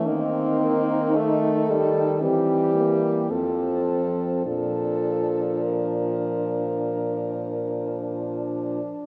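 Bathed in the long, wet reverb of a concert hall, this yearning, elegiac classical passage for horn quartet unfolds with rubato freedom: a warm French horn sings the melody with light vibrato and a soft attack, above a clear, distant horn in the accompaniment, a mellow horn with vibrato on the second line, and a mellow, vintage-toned horn with light vibrato holding the bass, while the harmony moves from Cm7/Eb through C7/E and F to settle on Bb at 4.5 seconds.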